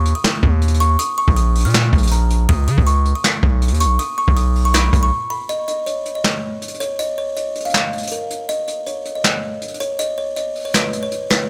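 A close, up-front studio mix sits in studio reverb for this dark, eerie half-time trap cut, taken from a longer piece. A buzzing kalimba carries the melody with a woody, ringing thumbnail pluck and tape echo, over a heavy, saturated 808-style bass whose aggressive distortion, fast attack and decaying tail drive the opening. A jazz brush drum kit of handclaps, hi-hat, boomy kick and a medium-tuned snare adds a warm, rolled-off acoustic texture, and after the bass drops out at 5.1 s, the kalimba and brushes carry the break from there to the end.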